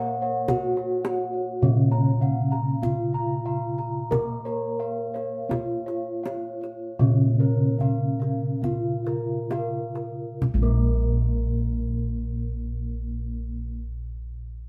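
Bronze metallophones and bossed gongs sound together from the start of this shimmering, hypnotic Javanese gamelan passage in a slow 4/4 that slows down until 10.4 s, with a mellow padded-mallet metallophone melody over a dry, close wooden-mallet metallophone accompaniment, bright, up-front gong arpeggios joined by a soft background metallophone also playing arpeggios, a round, vintage-toned bossed-gong bass, and soft-handed kendang from 0.5 s to 11.3 s, all in a moderate room reverb as the band plays live.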